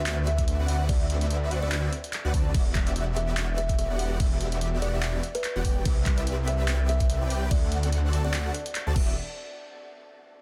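Driving a half-time 4/4 at 145 BPM with a lightly swung 16th feel, this emotional, bittersweet future bass drop in E minor, cut from a longer piece, puts a knocking electronic kick and a thick, saturated detuned saw bass up front, surrounds them with huge, bright supersaw chord riffs moving through D13, Em9, Cmaj9 and D7 with ensemble chorus and sidechain pumping, and adds a layered dubstep kit of crash, handclaps and hi-hat carrying a large-room sound, a woody, ringing kalimba melody entering at 0.3 s with tape echo and its own pumping, and a very quiet, airy, dreamy lead tracing soft arpeggios, all inside a dense, heavily limited modern master with little reverb.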